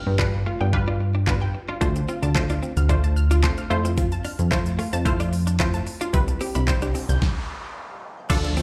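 A straight 4/4 pulse at 111 BPM drives this bittersweet, confident dance-pop excerpt, where knocking kick, fat snare and crisp hats sit up front beside a glossy, detuned synth bass pumping under the sidechain, punchy sawtooth plucks carry chords and echoing arpeggios, a clean, direct-recorded electric guitar picks a chorused riff, an impact opens and a noise sweep carries into a stop from 7.2 to 8.3 s, a faint grainy egg shaker joins at 4.0 s, and vintage string-machine violas surface only at 8.3 s over a G7, Dm7, Fmaj7 and Cmaj7 progression heard as a live gig through a club PA.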